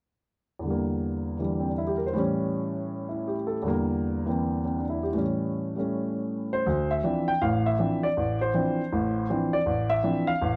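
Solo jazz with a smoky, moody air, carried by a single baby grand piano that sits up front in a light reverb, its intimate, natural tone touched by audible action noise. The swung passage circles twice through a minor ii–V of Em7b5 to A7 before settling onto a Dm9 at 6.7 seconds, the piano ranging from A1 up to G5. Cut from a longer piece, the clip runs from 0.6 to 10.6 seconds.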